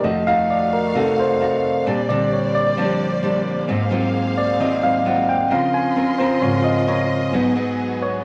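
Sophisticated and relaxed, this short bossa nova passage in 4/4 moves with a straight feel and is tuned to A4 = 443 Hz. A tine electric piano carries a solo across the full 8.2 seconds, its clean tone sitting up front and heard through its built-in speakers. Beneath it, a fingerpicked nylon-string guitar plays acoustic, classical-style accompaniment with a warm body. A lush symphonic string section holds bowed, sustained chords with soft attacks and expressive vibrato, sounding close yet full as an ensemble. The harmony drifts through rich chords such as F7b9, Bb69 and Dbmaj13 before reaching Abm7, and a wet studio ambience lends the sound a gentle sense of room.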